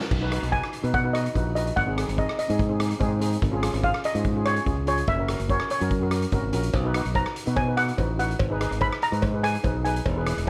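A mellow double seconds steel pan and an airy street-band drum kit, with dark cymbals, a medium-tuned snare, a boomy kick, hi-hat and rim clicks, open this carefree, festive calypso fragment, joined at once by a bright, direct fingered electric bass. A shimmering lead pan, played with medium rubber sticks and touched by slapback echo, carries the melody up front over chords moving from Bmaj7 through G#7, C#/G#, F#7, B and G#m. A small-room cowbell enters at 6.7 seconds, all within light reverb.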